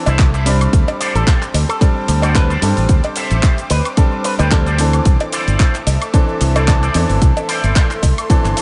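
Nu-disco with a feel-good, groovy mood, moving at 111 BPM in 4/4 with a light swing on the sixteenths, cut from a longer piece. A punchy, layered electronic kick sits up front beside a growly fingered electric bass, both pushed forward in the mix, while a dusty sampler-style kit adds gritty, tape-toned handclaps, hi-hat, ride cymbal, shaker and woodblock, and a close, dry cowbell with analog delay sits in the background. A brilliant grand piano with short sustain plays accompaniment through analog delay, and a lush, thick detuned pad holds slow-attack chords under chorus, phaser and sidechain pumping. A twangy, clean picked guitar through an envelope filter plays a riff roughened by 12-bit sampler grit and ensemble chorus. A second filtered guitar, fingered and set back, carries a short melody from 1.2 to 4.5 seconds with harmonic tremolo. The harmony moves from C69 to D7sus4 and back to C69 at 5.1 seconds, all in a lightly reverberant, echo-heavy mix with a soft top end.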